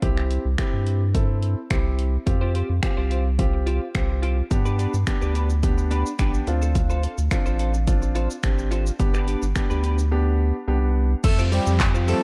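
A punchy analog drum machine drives this euphoric, upbeat dance-pop excerpt at 107 BPM in a straight 4/4, its kick, hi-hat, handclaps, finger snaps, shaker and crash cymbal sitting up front with the character of a small room. Beneath it, a deep, thick, saturated sub bass and a warm concert grand piano with deep lows and short sustain both pump with the sidechain as the chords move through C, Fsus2, G and Dm7. At 2.3 seconds a bright, twangy twelve-string electric guitar joins with a clean, picked riff coloured by analog chorus, and the piano adds a fill at 5.6 seconds. After a brief silent gap, a warm, smooth-topped horn section with light vibrato and octave doubling takes the melody at 11.2 seconds, pumping and echoed by delay, while very quiet, lush, detuned supersaw chords sustain and a downlifter sits in the background. The production is dark and warm, wrapped in digital ambience.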